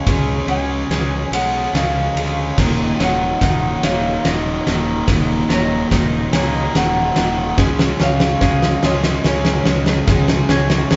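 A slow 6/8 pulse at 48 BPM drives this cathartic, cinematic post-rock build-up, where a big rock drum kit with a fat snare and punchy kick rolls through a fill from the start beneath a bright fuzz guitar riff, an overdriven fingered bass, a twangy electric guitar and felt-muted upright piano arpeggiating in the background, a hollow, flute-like pad holding very quiet chords, and a dark, slightly broken-up slide guitar singing the melody over Db and Ebm7, all played live in a wet stone room with a rolled-off top.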